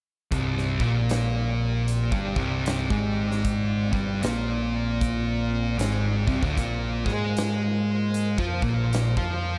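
A dark, up-front fuzz guitar drives this brooding, hypnotic stoner and doom metal excerpt, joined by a second fuzz guitar with a warmer tone as both grind through a swung riff that moves from C5 to Bb5 at 6.6 seconds. Beneath them, a growly, overdriven picked bass adds bright, punchy grit, while a big acoustic rock kit with a punchy kick and medium-tuned snare fills a large room. In the background, a silky vintage string machine holds mellow sustained chords, colored by phaser and ensemble chorus, inside a small room ambience.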